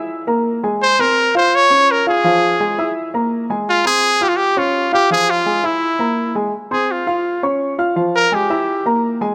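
The baby grand piano opens the excerpt with arpeggios, its tone warm and present with long sustain, sitting up front. At 0.8 seconds a bright trumpet joins with the melody, playing with vibrato and a smooth top in a pop style, also placed up front. This is a danceable Latin piece at 168 BPM in 4/4 with a straight feel, set in F harmonic minor, and it is cut from a longer work. The harmony cycles through chords such as Absus2, Fm, Db and Fmmaj7. From 6.5 seconds the music moves into a new section where the trumpet takes a solo. A moderate plate reverb gives the recording a sense of space.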